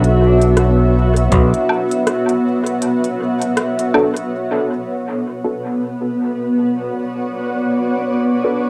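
A growly, up-front fingered electric bass sits under a bright, cloudy granular pad in this spacious, deep ambient dub excerpt at 80 BPM in B minor, with a 16th-note swing feel and the whole home-cassette recording carrying a short booth ambience. A fingerpicked pedal steel guitar adds gritty, tape-echoed arpeggios in the background, while an overdriven electronic drum kit with crisp hats, rim click and woodblock plays through dub echo until 4.3 s, joined by a brief, deep electronic kick. From 3.9 s, muted, chorused dub chord stabs enter alongside the pad with detuned sawtooth plucks as the harmony moves from B5 to Bm7.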